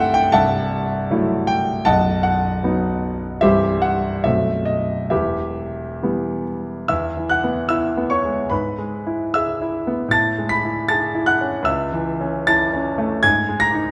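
A clear, smooth grand piano with a vintage, up-front tone and short sustain opens this brooding, passionate romantic character piece in 2/4 at a rubato 65-80 BPM, spanning B0 to B6 as it moves from F#m7b5/C through B7b9 to E minor before shifting at 6.9 s into E major and on through Amaj7 to an Ab5 at 13.2 s, all carried by a wet recital hall reverb in this fragment cut from a longer piece.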